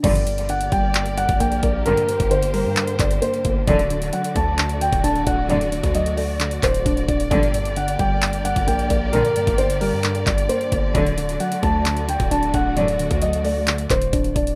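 Dark and hard-hitting, this short cut from a longer trap piece rides a heavy half-time feel over a brooding minor progression that swings between Gm and D. A felt-muted upright piano carries the melody, its mellow, intimate tone softened by a low-pass filter and flecked with audible action noise. Beneath it, a soft round pluck with chorus fills out the accompaniment, while a lush symphonic string section holds bowed chords with expressive vibrato and a smooth top. A close chamber string section adds low, sul tasto stabs treated with delay, dropping out at 13.0 seconds. Anchoring it all are a punchy, decaying 808-style bass and an up-front electronic drum kit with a knocking kick, metallic hi-hats, handclaps and crash cymbal, captured in a dry, rough demo-style mix.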